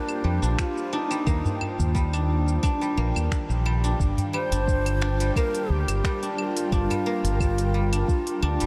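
A straight 4/4 pulse from a soft electronic kick and an organic electronic kit of crisp hi-hat, cabasa, claves and finger snaps drives this hypnotic, mystical organic downtempo piece, with a small, dry udu joining at 1.4 s. A round, punchy fretless electric bass with analog chorus and sidechain pumping sits up front, while a silvery, fingerpicked guzheng rings out arpeggios through a low-pass filter and delay, beneath an ethereal, detuned pad carrying sustained chords with phaser, ensemble chorus and sidechain pumping. Over chords moving from Bb69 to Ebmaj7 and Gm7, a breathy bamboo bass bansuri plays the tongued, slightly unsteady melody through tape echo, the dreamy mix soaked in a huge ambient reverb.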